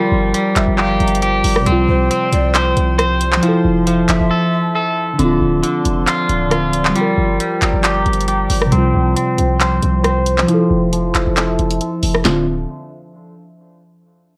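A hard-hitting 808-style bass, punchy and heavy with a fast attack and decaying tail, sits up front in this dark, brooding trap cut, taken from a longer piece and moving at a half-time feel. A trap drum kit with a sharp snare, bright hats, handclaps and rim clicks drives alongside it, while a clean, bright electric guitar picks arpeggios through spring reverb and digital delay. Muted, felt-like synth keys supply soft, intimate accompaniment, and a deep, detuned analog pad holds sustained chords colored by chorus and phaser. Breathy pan pipes float in the background with vibrato and a crisp chiff, carrying a second line that ends at 4.7 seconds, partway through a break that leads into a filter sweep running from 5.2 to 12.3 seconds. The whole sound is dry and close, steeped in the worn, warbling pitch drift of old cassette tape, as the harmony cycles through Gm7, Csus4, Fmaj7 and Dm7.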